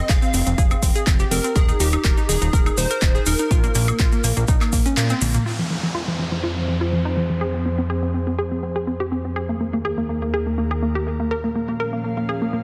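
Progressive house at 123 BPM in F minor, tuned slightly low, this dreamy, driving excerpt opens with a bright, detuned plucky unison lead carrying a catchy melody through a dub echo, over a round, chorused analog pluck playing arpeggios with sidechain pumping and delay. Beneath them, a fat, sawtooth-heavy analog bass pumps in time while a punchy, tape-warm electronic kick sits up front, joined by a pop drum kit of overdriven handclaps, metallic hi-hat, toms and woodblock, and a grainy, vintage tube shaker tucked in the background. The harmony moves from Fm to Ebsus4 before dropping out at 3.5 seconds, and the kick falls away at 5.0 seconds with a band accent and a drum fill leading into the next passage. From 5.5 seconds the drums, bass and lead are gone, leaving the arpeggiated pluck under a filter sweep as an electronic downlifter descends. At 6.0 seconds an airy, breathy pad with slow attack, lo-fi sampler grit and its own filter sweep enters, filling in chords from Fm through Ebsus4 to Bbm. 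A moderate concert hall reverb lends depth to a dense, heavily limited modern master.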